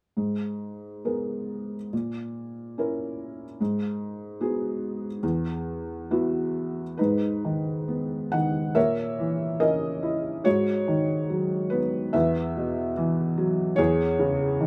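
Classical solo piano in G# minor, dark and melancholic, moving at about 70 BPM in 4/4 with a loose, rubato feel. A felt-muted upright piano carries everything alone from 0.2 to 14.7 s, spanning E2 to F#5 with a soft, boxy, intimate tone. Its audible action noise sits up front in a small room with moderate reverb, while a chord cycle of G#madd9, A#dim, G#m7 and Esus2 returns from 7.0 s, opening on G#m this time, before the excerpt closes on C#m/E.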